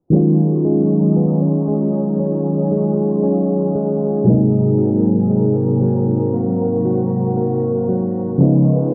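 An FM electric piano with tremolo sounds through this late-night R&B excerpt in Eb minor at 58 BPM, its warbling, vintage tone sitting up front over a muted string section that holds dark, veiled chords from a distance. A clean, direct-recorded electric guitar picks compressed, scooped arpeggios with tape echo as the harmony moves from Ebm11 at 0.1 s to Ab9 at 4.3 s and Db9 at 8.4 s. A filter sweep runs through the whole cut, and moderate spring reverb and the low-passed sound of a home cassette recording give it a moody, lo-fi haze.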